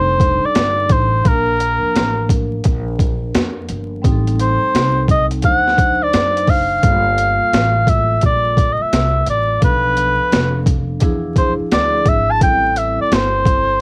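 Vinyl crackle and light reverb surround this homemade cassette recording, a warm jazz-hop excerpt at 86 BPM in 4/4 with a 65% swing on the sixteenths. A punchy, up-front oboe with light vibrato and a smooth top plays the solo melody over jazzy changes from F13 and Bbmaj7 to Gm9 and Am7, backed by ringing soft-mallet vibraphone with slow motor vibrato and a woody pizzicato upright bass. The gritty, pitched-down boom bap drums come in at 0.2 seconds, compressed and overdriven with a tape sheen, pairing a thumpy kick and high-tuned snare with the hi-hat.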